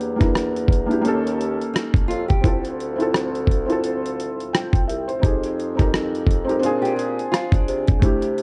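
Dark, hazy production with light reverb frames this reflective lo-fi hip hop fragment at 86 BPM, swung on the sixteenths. Up front, a gritty, overdriven sampler-style drum kit with a thumpy kick, hi-hat and rim click sits beside a soft, felt-muted upright piano whose intimate chords carry audible action noise, while a mellow bassoon plays a distant, roomy bass line with light vibrato. At 1.7 s a small, fingerpicked nylon-string guitar adds a warm second line through tape echo, moving over jazzy changes from Em7b5 through Dm9 to Bb9.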